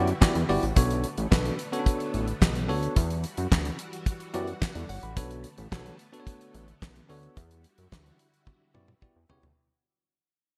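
Late-night and slick, this early-eighties boogie funk excerpt moves at 109 BPM in a straight 4/4, cycling between Em9 and Bm9 chords. A damped 70s drum kit sits up front with a dry, fat snare, a tight kick, hi-hat, toms and handclaps, all treated with gated reverb, and it closes with a drum fill from 8.5 to 9.6 seconds. Beneath it, a fat analog bass with a thick, detuned sawtooth tone and a filter sweep holds down the low end with a fast attack. A bell-like tine electric piano plays bright, clean accompaniment through its built-in speakers, while a lush string machine ensemble pads sustained chords in the background with slow attack, long release and ensemble chorus. The bright 1980s-style digital production adds light small-room reverb, and the whole passage is shaped by a fade-out as it is cut from a longer piece.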